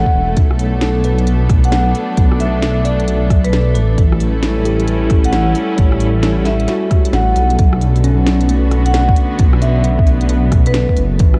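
Rainy and melancholic, this short future garage cut in B minor at 133 BPM, with a 64% swing on the 16ths, sets a metallic, ringing vibraphone melody over a bell-like tine electric piano drifting in diffuse delay, intimate sul tasto strings, a dark, rumbling detuned saw bass up front, all three pumping against a deep layered electronic kick, and an overdriven electronic kit of woody snare, rim click and smooth hats, all soaked in cathedral reverb and cassette haze as Bm7 moves to A7 and back to Bm7 at 7.6 seconds.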